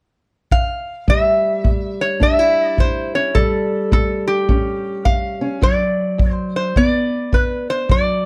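A dark, lightly reverberant production frames this short cut from a longer acoustic country blues piece, soulful and laid-back at 106 BPM in 4/4 with a swung eighth-note feel. A metal-body resonator slide guitar carries the melody from 0.5 seconds, its bright, nasal, metallic tone up front and played with fingerpicks and a slide between G4 and F5. A punchy, natural-sounding kick drum with brushes enters alongside it in a studio room setting, keeping time close in the mix. At 1.1 seconds a fingerpicked steel-string parlour guitar joins with a boxy accompaniment ranging from D2 to E4, as the harmony settles on A7 before moving to D and then G. The result is a warm, soulful sound, the resonator's bright voice standing clear over the darker guitar below.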